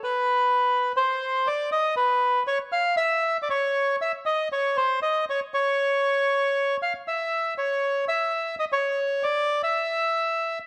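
A solo bandoneon carries this brief tango fragment, its reedy, bright, airy voice placed up front from the opening moment until 10.6 seconds. The playing moves with a rubato feel over a 4/4 pulse at 118 BPM, stretching and pulling the time in a tense, passionate way. Its line sits in a narrow upper-middle range, from B4 to E#5, which keeps the phrase focused and taut. Light reverb surrounds the instrument, and the overall production leans dark and warm. Cut from a longer piece, the fragment holds a single section of unaccompanied tango.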